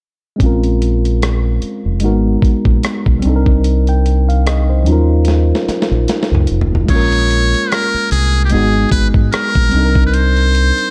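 A buzzy, metal-muted trumpet enters at 6.9 seconds with scooped notes and light vibrato over a worn, slightly out-of-tune tine electric piano with phaser, a round, punchy fingered bass and a gritty, thumpy sampler-style drum kit that plays a fill just before, giving this short, sultry neo-soul excerpt in a dark production with light reverb a swung, soulful feel.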